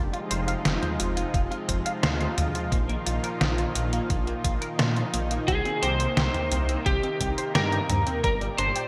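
Cinematic and driving, this short synthwave cut from a longer piece opens on a lush, warbling unison pad with chorus and sidechain pumping, sustaining chords over a dark, rumbling detuned saw bass, while a bright, twangy clean electric guitar picks a riff in the background through ensemble chorus and digital delay. An up-front detuned 8-bit drum machine drives hi-hat, snare and toms through gated reverb, joined at 1.3 s by a thumpy electronic kick, as the chords move from Fm7 through Bbsus4 to Cm7 and Gm. At 5.5 s a lightly driven, slightly broken-up lead guitar enters up front with a melody coloured by analog chorus and delay, all set in a moderate hall reverb with bright 1980s-style digital production.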